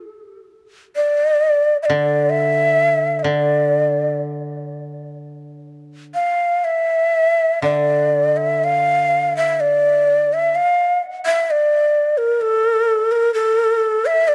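A breathy, hollow shakuhachi carries the melody up front, entering at 1.0 seconds and ranging from A4 to F5 with vibrato, a crisp chiff on its attacks and lifted highs that give the bamboo tone an airy edge. This is austere, solitary Japanese chamber music in D hirajoshi, moving in a rubato 4/4 at roughly 58-67 BPM. A koto sits far beneath it from 1.9 to 10.6 seconds, its woody, fingerpicked tone dwelling on D3 as quiet accompaniment. The passage falls into two sections, with the second beginning at 7.6 seconds and the shakuhachi continuing alone after the koto stops. Light reverb and a small-room ambience frame a dry, gritty recording, and the clip is cut from a longer piece.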